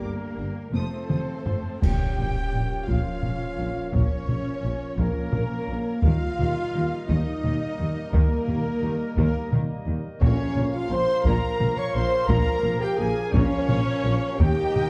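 A dark, full-bodied orchestral sound on a moderate scoring-stage reverb opens this heroic, relentless excerpt of epic film score in Bb dorian, moving at 57 BPM in a straight 6/8, with hard-stick taiko drums entering at 0.7 seconds for a fill that lands on a band accent of dark clash cymbals and concert bass drum at 1.8 seconds, where a distant, roomy woodwind section joins with sustained chords. Mellow French horns carry the most prominent sustained chords alongside a clear trombone section, while mellow, tight trumpet stabs ring above and a close-miked tuba, rich cellos and distant double basses anchor the bass. Lush, bowed violins in two lines with soft attack and vibrato sing the melody and second line over woody violas in the background, and a brief timpani entry on Bb at 10.2 seconds marks the return to Bb minor.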